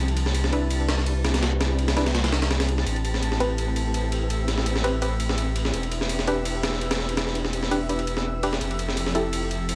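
Vinyl crackle and a light reverb give this short drum and bass cut a raw, nostalgic, worn-record feel. In A minor at 167 BPM with a slight swing on the 16ths, it moves through Cmaj9, Am9, Em7 and Fmaj7 while a thick, saturated sub bass with a triangle tone and fast attack sits up front alongside a gritty, compressed, sampler-style jungle kit of ride cymbal and high-tuned snare, re-recorded in a small room and entering at 0.1 seconds. In the background, a silky vintage string machine holds slow-attack chords through an ensemble chorus, with a filter sweep running across it for the whole passage. A muted, mellow sawtooth chord stab with a plucky filter and short decay joins at 0.5 seconds, coloured by chorus and dub echo. High above, a reversed, detuned granular texture swells in dreamy and bright, trailing a long release into its own reverb.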